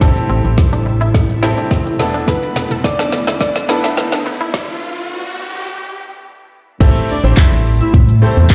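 A confident yet bittersweet dance-pop build-up in A minor at 106 BPM opens on a clear grand piano, a shimmering, ethereal pad pumping under sidechain, a twangy direct-recorded clean guitar riff in the background, a hollow, organ-like FM bass and an up-front deep house kit with a deep kick, woody snare and smooth hats playing a fill, while a filter sweep runs, a background riser enters at 1.2 s, a round, gentle struck synth lead and a detuned analog pluck arpeggio with dub echo appear briefly, and a stop arrives at 4.5 s. The drop at 6.8 s lands on Am7, and a smooth, full-bodied supersaw melody enters at 7.1 s, all set in a large studio reverb.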